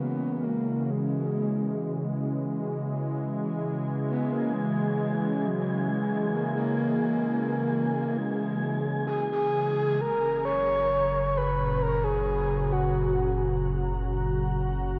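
Moving at a slow, straight 66 BPM in 4/4, this serene, peaceful ambient fragment in F# mixolydian drifts over an F#9 chord that settles onto plain F# at 10.0 seconds. A smooth, detuned sawtooth pad with a soft attack and chorus sits up front, holding sustained chords from the start. Alongside it, a breathy, flute-like synth lead carries the melody with vibrato, chorus and a diffuse ambient delay until 13.4 seconds. An airy, wind-like tuned noise texture with its own reverb drifts in quietly at 3.5 seconds. In the closing section a deep, round sine sub bass enters, its warmth anchoring the low end. The whole piece floats in a huge, wet reverb with a long seven-and-a-half-second tail, coloured by the worn, warbling pitch drift of old cassette tape.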